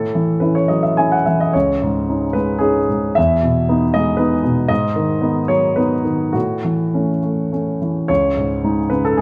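A natural, up-front baby grand rings through a moderate stone-room reverb in this short, live-in-the-room fragment of a longer neoclassical minimalist piano piece, a melancholic, wistful solo in C# minor and 3/4 played with rubato at roughly 100-120 BPM and tuned to A4 = 442 Hz, spanning C#2 to G#5 over chords that drift from F#m7/A through C#sus2, Emaj7 and G#m7 before returning to F#m7/A at 6.3 seconds and C#sus2 at 8.1 seconds.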